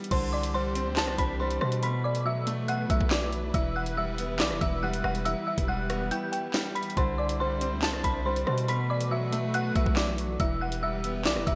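Half-time drill drums with a knocking kick, sharp snare, metallic hi-hats, handclaps, rim clicks and crash under gated reverb drive this ominous, cold hip hop excerpt alongside a distorted, heavy 808-style bass, an eerie, inharmonic detuned synth bell melody with chorus and digital delay, bright concert grand piano accompaniment and lush bowed strings sustaining in the background, while the kick drops out from 6.1 to 7.0 seconds over a cycle of Cadd9, B7sus4 and Emadd9.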